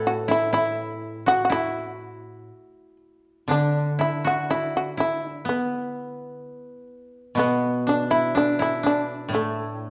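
A shamisen and two kotos sound together from the very start of this brief excerpt of austere, calm Japanese chamber music, moving in a flexible, rubato duple metre. The fretless shamisen carries the melody up front, its plectrum-plucked tone percussive and buzzing. Beside it, one koto plays a bright, woody second line in a similar register, also placed close, while a second koto, plucked with fingerpicks, supplies a warm, low accompaniment. A new section begins at 3.5 seconds and continues to the close at 9.9 seconds. The production is dark overall, and the ensemble sits within the lingering reverb of a recital hall.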